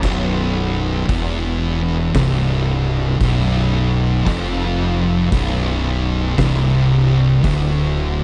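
A slow, straight 4/4 pulse anchors this brief, hypnotic slice of stoner and doom metal, cut from a longer piece and resting on a B minor chord throughout. An oversized, low-tuned acoustic drum kit of kick, snare, hi-hat and crash cymbal drives it, with a punchy kick and a fat snare in a saturated, gritty sound, and the kit drops out at 7.7 seconds. Up front, a fingered electric bass plays with fuzz, overdrive and tube saturation, and its tone comes across warm and amped. Behind it, two thick fuzz guitars share a low, distorted, picked riff, one with a darker edge than the other. The recording is dry and close, with little reverb, in a 1970s studio manner, and the guitars and bass carry on until they stop at 8.2 seconds.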